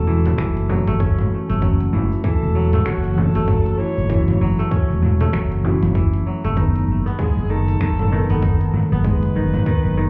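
A swung sixteenth-note groove in 4/4 drives this meditative, hypnotic organic downtempo excerpt, built on a tight, tape-warm electronic kick, a crisp-hatted electronic kit of congas, finger snaps, hi-hat and shaker, and a very quiet, softly played frame drum, all entering between 0.3 and 0.4 seconds. A round, punchy fretless electric bass with analog chorus and sidechain pumping sits up front, while ringing fingerpicked kora arpeggios and muted, felt-like synth keys with chorus and delay hover behind a dark, airy bowed kamancheh melody with light vibrato and portamento. The harmony moves from F#m7 to G#m/F# at 6.6 seconds, and the whole mix sounds muffled, as if heard through a wall from inside a club.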